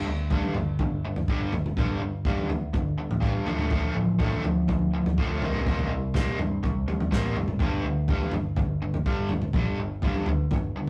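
A bright, double-tracked overdriven electric guitar sits up front, playing a picked riff through harmonic tremolo over G5, Dm at 3.5 seconds, C7(no3) and back to G5, in this bittersweet, cool indie rock excerpt at 124 BPM in G minor, tuned to A4 = 444 Hz. A loose acoustic drum kit, also up front, brings a tight kick, a medium-tuned snare and toms with a rolled-off top and small-room character, while a dark, round, punchy picked electric bass stays in the background. The rough rehearsal-room recording carries tube saturation and a moderate studio reverb.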